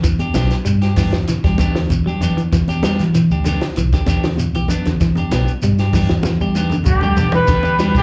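Heard through a club's PA system with light reverb, this short afrobeat excerpt has a defiant, intense mood at 97 BPM in a straight 4/4, sitting on an E minor seventh chord. A dark, round, foam-muted electric bass with a punchy, amped tone sits up front, while a compact cocktail drum kit plays hi-hat, kick, snare and toms with a dry, natural sound, a high-tuned snare and a punchy kick. Congas with ringing, high-tuned hard hands sit in the background beside a grainy, band-limited shekere, both carrying slapback echo. A clean, picked electric guitar plays arpeggios with slapback echo, and a bright, twangy, slightly broken-up guitar adds scooped stabs with the same echo. After a drum fill from 6.2 seconds, a tight horn section enters at 6.9 seconds with a pop-style melody and light vibrato up front, joined by an edgy, forceful alto saxophone playing a lower second line in the background, both with slapback echo.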